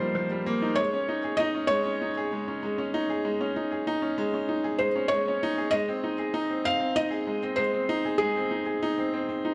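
A straight 4/4 pulse at 97 BPM sets an unhurried pace for this luminous, tender piece of electronica, cut from a longer work. Two upright pianos carry the music together across the whole 9.5 seconds. A felt-muted piano sings the melody in a soft, mellow, intimate voice, with the natural sound of its action audible up close. Beneath it, a brilliant, woody upright piano sits up front with a polished presence, playing a repeating riff in a lower register. Both pianos pass through a digital delay, and a moderate echo chamber reverb adds a gentle sense of space. The harmony moves from Ebadd9 to Dbsus2 and settles on Ab at 5.7 seconds, giving the passage an open, glowing character.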